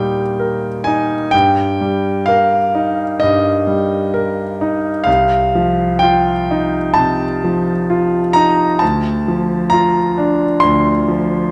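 Classical in style, this is a romantic nocturne for solo piano, nostalgic and serene, moving slowly with a rubato feel in four. A concert grand plays alone from start to finish, ranging from deep bass up into its upper register, and its tone is clear, natural and intimate, with the mechanical noise of its action audible up close. The harmony settles on Eb before gently turning toward a dominant-seventh colour at 5.1 s and coming to rest on Bb/D at 8.8 s. The instrument sits up front, surrounded by the lingering reverb of a recital hall. This brief passage is cut from a longer piece.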